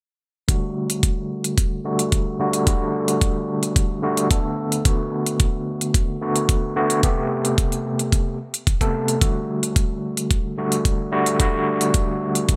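An overdriven tine electric piano opens at 0.5 s alongside an electronic kick drum and hi-hat, setting a sleek, sensual nu-disco groove in straight 4/4 that runs through to 12.6 s. The gritty, barky piano sits up front through a combo amp, with medium tremolo, sidechain pumping, delay and a low-pass filter sweep as it moves through Dadd11, Bm7 and Am9. A knocking, tape-toned kick and crisp hats round out the bright 1980s-style digital production, bathed in a moderate plate reverb.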